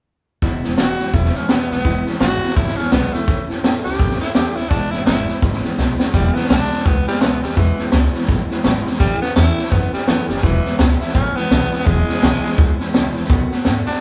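Upbeat and rollicking, this 168 BPM swung rockabilly cut in E major features a breathy, raspy tenor saxophone leading the melody from 0.8 seconds over bright picked steel-string acoustic guitar, woody pizzicato upright bass on gut strings and an up-front vintage drum kit with a high-tuned snare and punchy kick, all playing live together in one room with moderate studio reverb, while a drum fill at 5.8 seconds ushers in the second section before the chords move from E and A to a closing B7.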